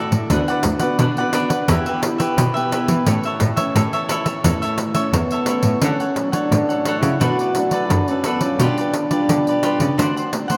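Samba and choro blend in this joyful, festive passage cut from a longer piece, moving at 87 BPM in a straight 4/4 in D major. Up front, a crisp, picked cavaquinho and a jingly, close and dry pandeiro struck with hard hands drive the groove, while a small nylon-string guitar adds thumb-plucked accompaniment with audible finger squeak. Beneath them a single muted cello, bowed con sordino, supplies a veiled, distant bass line with light vibrato, soft attacks and portamento. At 5.1 seconds a breathy trombone takes the solo melody in a jazz style, its dark tone marked by scooped notes and a smooth top. The harmony travels from Bm/D through Em and A, then shifts to Dmaj7, Bm7 and G7/B before landing on D7 at 10.0 seconds. A cathedral reverb with a 6.0-second decay places the music in a vast, echoing space.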